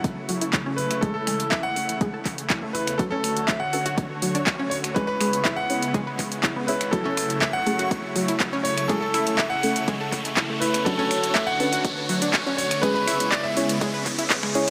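A bright, polished concert grand piano carries a hopeful melody through this euphoric progressive house build-up at 122 BPM in A major, over a lush detuned supersaw pad, a soft nasal chord stab and a round analog pluck arpeggio that all pump with the sidechain and sweep through filters, while a metallic, overdriven deep house kit of snaps, claps and hats sits up front with a deep layered kick, a very quiet saturated sine sub bass underneath, a dreamy reversed granular texture, and a background riser climbing from 0.2 seconds, all bathed in a huge ambient reverb across F#m7, Amaj7, Dmaj7 and C#m7 chords.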